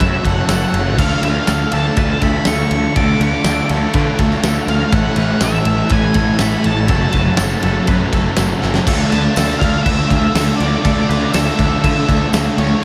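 Shoegaze and dream pop rock at 122 BPM in a straight 4/4, this wistful, dreamy excerpt drifts through F#m, Dm and Amaj7 before settling on a Dmadd9 at 8.9 seconds, where a drum fill at 8.6 seconds ushers in a new section. An octave-fuzz lead guitar carries the melody between C#5 and D6, its dark distortion trailed by analog delay. A twangy, clean, compressed guitar picks arpeggios through analog chorus and delay in the background. A thick, dark fuzz guitar with chorus, an overdriven semi-hollow guitar with reverse reverb, and a very quiet, bright double-tracked distorted guitar stack up riffs beneath. Up front, a fuzz picked bass growls with overdrive alongside a big rock kit with a fat snare, punchy kick, crash and ride, while a jingly tambourine enters at 0.5 seconds. A moderate plate reverb soaks the whole mix in a hazy, dreamlike wash.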